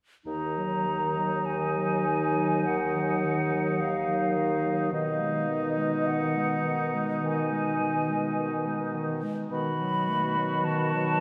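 Melancholic and elegiac, this slow romantic movement for wind quintet, cut from a longer piece, moves at 52 BPM in 4/4 with a rubato feel in E-flat minor. The hollow, pure-toned concert flute carries the melody up front, close-miked and sung with vibrato and tongued notes, from Eb5 to B5. Beneath it the oboe adds a second line with light vibrato and a smooth top, while the clear, vintage-sounding clarinet and the dark, punchy French horn, set in the background, supply accompaniment, and the bassoon, warm with vibrato, holds the bass. All five instruments play together from 0.3 to 11.2 seconds as the harmony moves from Ebm to Abm/Cb at 4.9 seconds and on to B7 at 9.5 seconds. A wet cathedral reverb with a long 4.3-second decay surrounds the ensemble.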